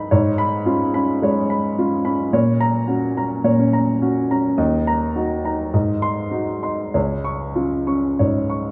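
Passionate and warm, this short fragment of a romantic classical character piece features a solo upright piano, woody, polished and up front, in 4/4 at 96-110 BPM with supple rubato, its harmony passing from C#7/G# through F#/A#, D#m and G#7 to settle on C# across a span from C#2 to C#6, heard within a dark production and a moderate recital-hall reverb.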